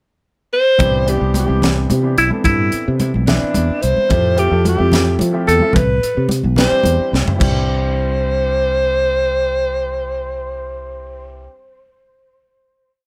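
A breathy alto saxophone opens this bright, funky electric jazz fusion piece with a pickup at 0.5 seconds, its close-miked, vibrato-laden hook phrases staying up front in a jazz style. At 0.8 seconds the band enters in a 6/8 groove: a clear grand piano places syncopated, rootless chord stabs with long sustain, a dark, round fretless bass with subtle chorus plays a syncopated riff, a crisp drum kit with a high-tuned snare and punchy kick fills a pumping small room, and damped, soft-handed congas sit in the background. After a drum fill at 7.1 seconds, the drums and congas drop away, and saxophone, piano and bass hold a final chord under light reverb.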